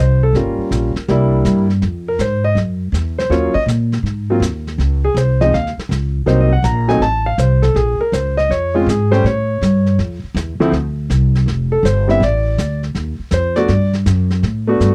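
Cool and swinging, this short jazz piano trio excerpt moves at 162 BPM in 4/4 with swung eighth notes, as an intimate, up-front concert grand with audible action noise and deep bass solos across the full 14.9 seconds over a woody, pizzicato upright bass and a softly mixed vintage brush kit with a punchy kick and rolled-off top that enters at 0.3 seconds, all captured in a dry, close 1970s-style studio sound while the chords wander from Gm7b5 through Dbmaj7sus2 and Bbm9 to settle on Gmaj9.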